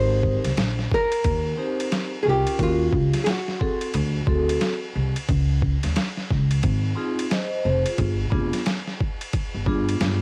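A swung 89 BPM groove in 4/4 drives this smooth, cool jazz-hop excerpt in Ab major, with a gritty, pitched-down boom bap kit entering at 0.2 s with a thumpy kick, medium-tuned snare, hi-hat and ride, overdriven and up front beside a woody, dark pizzicato upright bass. A small, fingerpicked nylon-string guitar carries the melody until 4.6 s, while soft-mallet vibraphone accompanies with a mellow, airy ring and slow motor vibrato, both softened by cassette tape and plate reverb. The harmony glides through rich chords from Abmaj9 to G7b9 inside a homespun cassette sound dusted with vinyl crackle.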